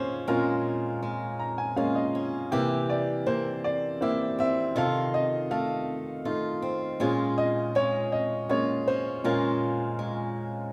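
A three-beat metre with a straight feel carries this short folk fragment, cut from a longer piece, and its mood is heartbroken and intimate. A warm baby grand piano sits up front and carries the melody across a broad span from Bb2 to Bb5, adding a brief fill between 1.0 and 2.5 seconds. Beneath it, a picked swing-style acoustic guitar plays arpeggios in a narrower middle range, its boxy tone also placed close to the listener but sitting a little lower in the mix than the piano. The harmony moves from Bbm7 through C7 and F7/C before settling back on Bbm7. A moderate recital hall reverb gives both instruments a modest sense of space while keeping the playing close and personal through the full 10.7 seconds.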